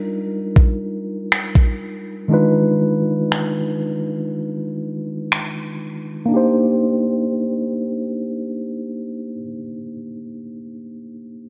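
Lightly reverberant and close, this short cut from a longer contemporary R&B piece carries a longing, late-night mood: a mellow, clean tine electric piano, heard through built-in speakers and softened by a low-pass filter and a filter sweep, moves from Ebmaj7 to Abm6/Eb before settling on Cm7 at 6.3 seconds, while a thumpy, overdriven, sampler-style gated 80s digital drum machine with finger snaps and kick drum, re-recorded in a small room, sits up front between 0.6 and 5.5 seconds.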